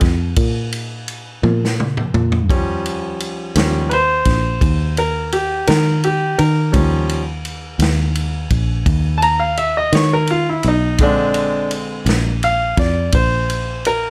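The recording is dry and close, with each part up front in a natural studio room sound. This slow blues in 12/8 has a swaggering, rollicking mood, and it is cut from a longer piece. A fingered electric bass with a round, foam-muted tone anchors the low end throughout, while a vintage acoustic drum kit brings a punchy kick, a medium-tuned snare, toms and dark ride cymbals under a rolled-off top. The drums play a fill from 1.4 to 2.5 seconds, and the clear grand piano enters at 2.5 seconds as the featured soloist, ranging from the middle register up into its upper reaches. The harmony moves from Bb5 to Eb7 and then to Bb7 at 11.0 seconds.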